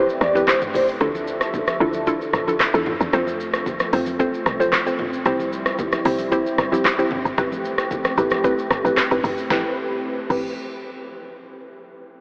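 A straight 4/4 afrobeats groove at 113 BPM in A minor is driven by an up-front deep house kit with a deep kick, punchy snare, handclaps, rim clicks, shaker, hi-hat, toms and crash, a woody, punchy log drum bass, and close, ringing congas in the background. A hollow, bouncy square pluck and a dark, smooth analog pad carry the chords from Am7 through Dmadd9, F and C, while a breathy flute-like lead with vibrato is heard only until 0.9 seconds, and a filter sweep runs from 1.0 to 9.5 seconds. The mood is mellow and hypnotic, with the dreamy mix soaked in huge ambient reverb and given an AM radio tint, cut from a longer piece.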